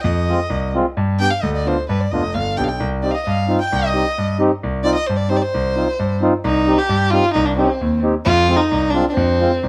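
Klezmer in C harmonic minor at 132 BPM in a straight 2/4, this short excerpt cut from a longer piece feels soulful and bittersweet. A single bowed violin carries the melody up front, its dark tone shaded with vibrato and portamento as it moves expressively between C4 and G5. Beneath it, a grand piano plays the bass line low in its register, natural and close, while a reedy, round accordion fills out the middle from just after the start at 0.3 seconds. The harmony moves from F minor to G and settles on C minor, with a second section arriving at 6.4 seconds and F minor returning at 8.3 seconds. A moderate studio reverb and a dark, warm production give the brief passage an intimate, melancholy glow.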